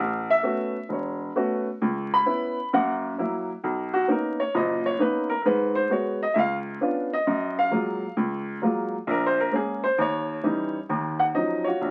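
Late-night and moody, this short cut from a longer solo jazz piece swings at 132 BPM in 4/4, carried entirely by a woody upright piano with short sustain that sits up front and ranges from E1 to B5. The harmony moves through rich extended chords such as A69, Bmaj9, C#7b9 and F#maj9 before landing on Ebm9 at 10.9 seconds as a new section begins. A moderate studio reverb surrounds the playing, and the sound carries the crackle of a very old 78 rpm record.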